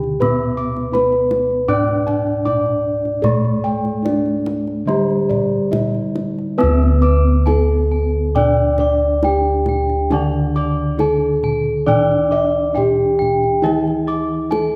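A reverberant hall with a 1.8-second decay surrounds this serene, ceremonial passage of Javanese gamelan, cut from a longer piece and moving at 68 to 83 BPM in a straight 4/4 in D pelog barang. A bronze metallophone carries the melody with a soft, mellow ringing from padded disc mallets, sitting forward in the midrange. Beneath it, a second metallophone struck with a horn mallet plays the accompaniment, its paired tuning giving shimmering beats and a vintage, band-limited character. Bossed gongs anchor the bass with a round, full, dry tone that sits up front, while a tight, close kendang handles the percussion and a higher set of bossed gongs weaves arpeggios with a padded, boxy, warm quality. At 6.6 seconds the music moves into a new section as a dark, smooth horn-mallet metallophone joins with its own arpeggios, adding a mellow upper layer through to the close.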